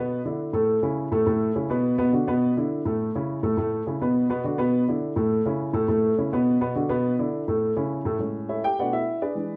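Festive and sunny, this short latin excerpt moves at a brisk 208 BPM in 4/4 with a straight feel, set in A major. A single dark baby grand piano carries everything, ranging from A2 up to G5 with a mellow, intimate tone and audible action noise that gives it a vintage character. The harmony cycles through A, Bm and E5 in a bright, repeating loop before shifting at 8.2 seconds to richer Amaj7 and Bm7 colors. Sitting up front in the mix, the piano sounds smooth and close, surrounded by a moderate large-studio reverb that lends a sense of space. The clip lasts just under ten seconds, cut from a longer piece.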